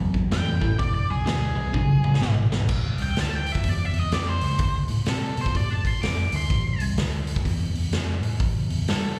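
Swung eighths in 4/4 drive this gritty, heavy blues rock and southern rock power-trio excerpt: a raw garage drum kit, punchy and saturated up front, and a round, foam-muted fingered bass carry a dark, double-tracked overdriven guitar riff until a drum fill at 1.7 s leads to 2.7 s, where an octave-fuzz lead guitar, already sounding from 0.3 s, takes a solo with slapback echo and analog delay, captured like a live club gig through the venue's PA.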